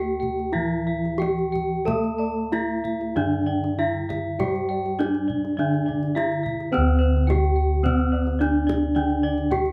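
An up-front, ringing bronze metallophone carries the melody in this serene, ceremonial Javanese gamelan passage in D slendro at 91-107 BPM, joined by a shimmering, airy lower metallophone accompaniment, a bright horn-mallet metallophone spinning high arpeggios, dark, mellow bossed gongs holding the bass, soft-handed kendang in the background from 0.2 s and boxy bossed gongs adding arpeggios from 1.9 s, the band heard live in one room under moderate reverb as this excerpt moves into a new section at 6.7 s.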